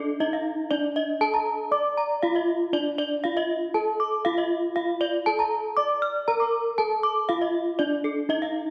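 Two bronze gamelan metallophones ring out together from the very start of this shimmering, brilliant fragment cut from a longer gamelan piece in D pelog, moving at a steady 119 BPM in a straight 4/4. One carries the melody between D4 and D5 with a wooden mallet, its tone dark and smooth, while the other spins bright arpeggios higher up under a horn mallet, stopping at 8.5 seconds just before the melody ends at 8.7. Both sit up front, their paired tuning producing shimmering beats, and a wet recital hall reverb lets the metallic tones bloom around them.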